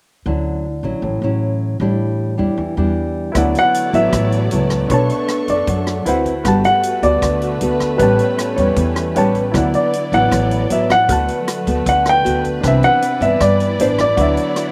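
A mellow, intimate baby grand piano carries the melody up front in this sunny, breezy bossa nova excerpt, its dark tone, short sustain and audible action noise giving it a close, natural presence. It arrives at 3.6 seconds, after a brief opening in which a fingerpicked nylon-string guitar with a classical touch and a pizzicato upright bass on gut strings set out the harmony from 0.3 seconds. The bass sounds woody and thumpy, while the guitar sits up front with a warm glow. Just before the second section begins, at 3.3 seconds, a clear concert grand piano with deep bass starts adding accompaniment, later playing a short fill at 5.9 seconds. A big-room drum kit joins at the same moment on hi-hat, rim click and a punchy kick, and a lush studio string section bows sustained chords with vibrato, portamento and a smooth top. Rich extended chords such as major ninths, sixth-ninths and thirteenths keep the harmony airy, and the dry, outdoor-like recording leaves each part sounding open and unadorned.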